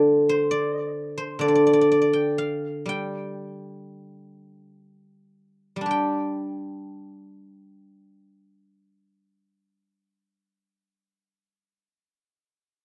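A solo guzheng, played with fingerpicks, carries this short passage of Chinese traditional music, its silvery, ringing tone sitting up front in the sound. The mood is serene and pastoral, moving in a free, rubato 4/4 that drifts between 46 and 70 BPM in the G shang mode. The instrument spans a range from D3 to G5, and a slapback echo trails its notes. The opening part slows down over its first 5.9 seconds before a new section begins and runs to 11.0 seconds, with the guzheng sounding until 11.8 seconds. Recorded outdoors with little reverb and an open, roomless quality, it is cut from a longer piece.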